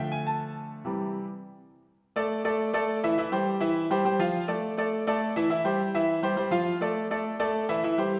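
A bright concert grand piano opens alone, sounding brilliant yet slightly worn, with a deep bass and an up-front presence across its span from C3 to A5. This short, danceable Latin passage cut from a longer piece has a fiery, straight 4/4 drive, with the harmony circling between minor, suspended and added-ninth colourings on D, alternating with C, and shifting into a new section at 2.0 seconds. The piano rings out in a wet recital hall reverb, giving it the spacious air of a church or concert hall.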